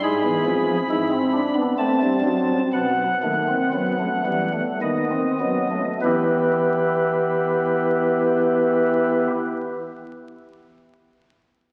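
Crackle from a very old 78 rpm record sits over a reverberant concert hall sound, giving this brief fragment of a longer piece a distant, antique character. It is a contemplative, serious baroque-style three-part fugue in E minor for solo pipe organ, in 3/4 with a straight feel and a tempo between 48 and 71 BPM. The organ plays alone throughout on soft, warm flute stops with baroque voicing, placed up front, its chiff and tremulant clearly audible as the notes range from deep bass up into the high treble. The opening passage slows across its first 6.0 seconds, moving through E7, A minor and B7 harmonies. At 6.0 seconds it settles onto E minor as a second section begins, and the organ stops at 9.3 seconds as the long hall reverb lingers.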